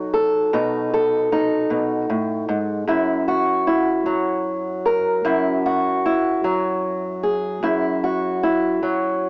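Through a worn, warbling cassette sound with pitch drift, a small-speaker quality and light reverb, this laid-back, soulful blues excerpt in 12/8 at 51 BPM features a dark, boxy, fingerpicked ladder-braced acoustic guitar playing solo and up front, moving from B7 to F#7 at 2.9 seconds.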